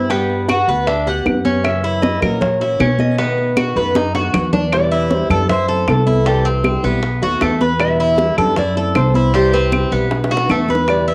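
Nostalgic and sultry, this Cuban son and guajira piece moves at a brisk 156 BPM in a straight 4/4, with a homespun cassette-tape character and a moderate studio reverb. Up front, a bright, metallic Cuban tres spins arpeggios on its doubled strings, while a small, fingerpicked nylon-string guitar carries the melody and a fingerpicked steel-string acoustic guitar with fresh strings fills in the accompaniment, these three parts sharing a plate reverb. A woody pizzicato upright bass on steel strings sits forward in the mix, anchoring the harmony as it moves from Gmaj7 through F#7 and B7 before turning to a minor-leaning cycle of Em7, F#m7b5, C and B7 in the second section from 4.7 seconds. Behind them, hard-handed high-tuned congas with a thick skin and tight bongos heard in a live room keep a background groove, joined at 0.5 seconds by woody, close claves. Percussion fills at 4.0 and 10.1 seconds mark the turnarounds in this fragment cut from a longer piece.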